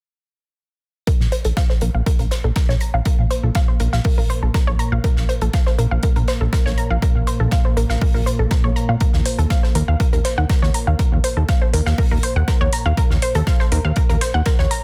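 A dry, punchy electronic kick drives this dramatic melodic techno excerpt, with a fat, detuned sawtooth bass sitting up front beside it and pumping to the kick as a filter sweep moves across it. A lush, detuned unison pluck plays arpeggios through tape echo and its own filter sweep, while a nasal, chorused analog drone enters at 2.4 seconds in the background and a quiet loose indie kit adds high-passed hi-hat and fat snare. At 9.3 seconds, smooth layered electronic hi-hats join the dense, heavily limited mix set in a small room.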